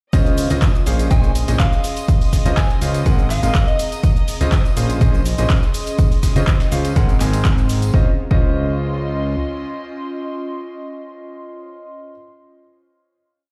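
Piano house at 123 BPM in Db major with a euphoric, feel-good mood, driven by an up-front four-on-the-floor electronic kick, a punchy analog drum machine with handclaps, hi-hat and shaker, a faint gritty sampler-style breakbeat kit and a dry tambourine, while a bright concert grand piano plays a rhythmic chord riff with tape echo over a fat, detuned analog bass, distant reedy chamber strings holding high chords, an airy breathy pad and a soft warbling synth bell heard from 1.1 to 4.1 seconds, with the piano, bass, strings and pad pumping to the sidechain through a drop that gives way at 7.9 seconds to a final Dbmaj9 chord.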